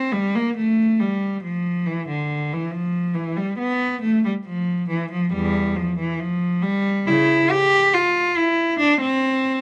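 Classical, baroque-style suite movement for unaccompanied cello, cut from a longer piece, in a solemn, grave mood with a rubato feel in 4/4. A single bowed cello plays alone throughout the 9.6 seconds, up front and focused, its rich vibrato tone ranging from E2 to G4 with a smooth top. Light reverb surrounds the instrument.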